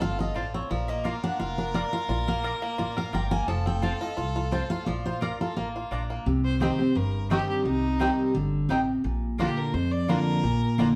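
Heard from further back in a studio room with a wet reverb, this short cut from a longer bluegrass piece in Bb major moves at a driving 173 BPM in a straight 4/4, with a rustic feel. The picked steel-string acoustic guitar sits up front with a full-bodied jumbo tone, fresh strings and audible finger squeak, taking the solo from the start until 6.3 seconds. The clear fiddle, a single bowed player with light vibrato and a nasal, earthy edge, then carries the solo to the end as the harmony turns toward C minor. Underneath, a twangy bluegrass banjo played with fingerpicks runs bright, percussive arpeggios, and a mandolin adds woody stabs from its doubled strings. A pizzicato upright bass with steel strings gives a growly, woody low end.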